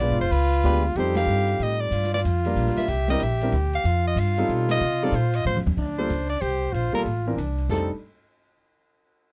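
A relaxed, sophisticated small-group swing jazz passage in 3/4 opens with the whole quintet at once. A breathy soprano saxophone carries the melody up front with vibrato, over a mellow trumpet's second line, a clear concert grand piano's accompaniment, and a woody, thumpy pizzicato upright bass. A dark, smooth drum kit with a boomy kick sits in the background of the dry, close 1970s-style studio sound, and the band hits accents at 1.1 and 4.7 seconds before a drum fill at 5.5 seconds leads into a new section of this short cut from a longer piece.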